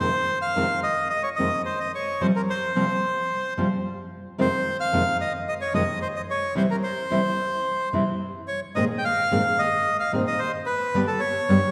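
A melancholic, tense tango in F minor moves at 110 BPM in 4/4 with a rubato feel, tuned slightly low to A4 = 439 Hz. A reedy, close-miked bandoneon carries the melody between A4 and G5, sounding full and dry as it sits up front. Beneath it, a dark, fingerpicked nylon-string guitar supplies classical accompaniment from F2 to Ab4, with audible finger squeak adding intimacy. The harmony moves from Fm7 through Csus4 and C to Abadd9 before settling on G at 11.0 seconds, leaving the phrase unresolved. A concert hall reverb with a long 2.1-second tail surrounds this short excerpt cut from a longer piece.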